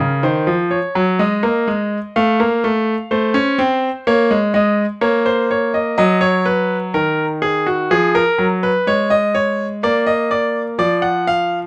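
At a slow 62 BPM in a straight 4/4, this short cut from a longer baroque-style two-part invention moves with a steady, driving pulse while keeping a contemplative mood. A bright grand piano plays alone for the full 11.7 seconds, ranging from Db3 up to Gb5. The harmony passes through Cm7b5 over Eb, F over A, Bb minor, Eb minor over Gb and Fm7b5 before settling on Bb. The instrument sits up front and sounds brilliant and polished, with long sustain and audible action noise that lend an intimate character. Close, detailed microphones and a nearly dry room keep every note present and clear.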